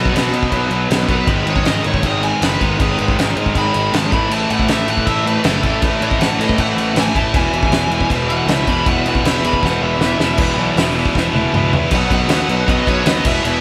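Upbeat and rowdy, this short cut from a longer punk rock piece moves in a straight 4/4 with the feel of a band playing live in one room, lightly touched by reverb. A dark, smooth lead guitar with overdrive carries a solo melody from the start until 10.4 seconds, riding over three picked rhythm guitars: a bright, overdriven semi-hollow guitar, a tight, distorted one, and a scooped, high-gain, double-tracked guitar sitting in the background. Underneath, a fuzzy, overdriven picked electric bass adds a growly low end. The loose indie drum kit sits up front with a fat snare, punchy kick and dark cymbals, and it throws in fills at 9.6 and 11.1 seconds. The chords move from B through G#m, A and E before the music shifts into two brief new sections and lands back on B at 11.9 seconds.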